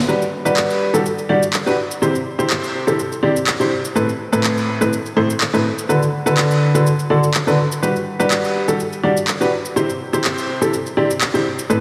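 Layered electronic shaker and handclaps drive a straight piano house groove beneath a clear, woody upright piano riff, filtered and touched with digital delay, cycling through Gmaj7, C, Amadd9 and D6 in this joyful, feel-good cut from a longer piece, with the upfront parts set in a lush hall reverb and a heavily compressed, radio-like sheen.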